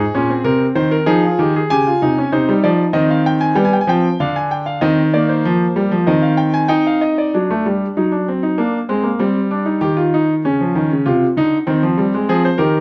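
A clear, smooth grand piano with a vintage tone sits up front in this contemplative, serious baroque-style three-part fugue, heard alone in a short cut from a longer piece and captured with close, detailed microphones and light reverb, its harmony passing through Abadd9, Fm, Cm and G7 before shifting to a new section at 7.3 seconds that moves through D/F#, Gm and Eb7 and ends on Fm.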